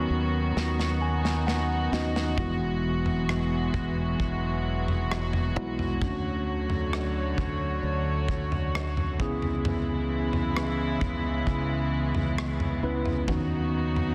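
A hopeful, emotional pop ballad at 66 BPM in E major, this excerpt opens on a Badd9/D# and moves through Eadd9, Dmaj7 and C#m7 before returning. A clean tine electric piano and an up-front, reedy string section with light vibrato and gut-string tone carry the harmony over a round, punchy fingered bass. A dark, smooth drum kit with a tight kick and rim click enters at 0.6 seconds with a fill alongside an electric piano fill, all set in a moderate concert hall reverb under a dense, heavily limited master.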